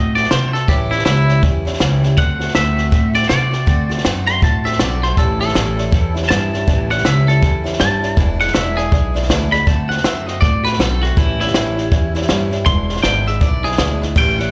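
Heard live through a club PA with a touch of room reverb, this rowdy, upbeat rockabilly fragment has a lilting swing as a twangy, compressed electric guitar with subtle chorus and tape echo plays a clean solo over D7, A7 and E7 chords, backed by a bright, boxy picked archtop acoustic guitar, a woody, thumpy pizzicato upright bass on gut strings, and a dry, punchy compact cocktail drum kit with a high-tuned snare and dark cymbals sitting up front.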